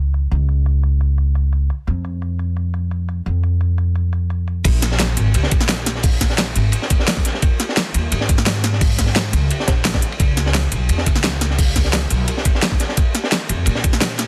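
A woody, pizzicato upright bass sits up front through this rolling, soulful liquid drum and bass excerpt, joined by a pop drum kit with a fat snare and crisp hats under low-pass filters. A gritty, saturated breakbeat kit with dark cymbals and a high-tuned snare slips in at 4.6 s, just before the drop at 4.7 s brings in a knocking electronic kick, all polished by studio reverb and a dense, heavily limited master.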